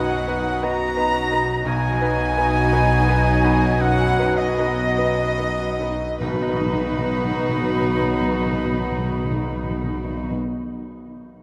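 A chamber violin section carries the melody with light vibrato and a soft, intimate sul tasto tone in this tender, moving cinematic film-score excerpt in B major at a rubato 48-58 BPM that slows over the first 6.2 s, with a clear oboe, a hollow flute and a floating symphonic violin section on second lines, a present grand piano, very quiet woody violas and distant French horns, a ringing fingerpicked harp, a rich cello section and dark double basses below, and up-front hard-mallet timpani entering at 6.2 s, set in a vast, echoing cathedral space.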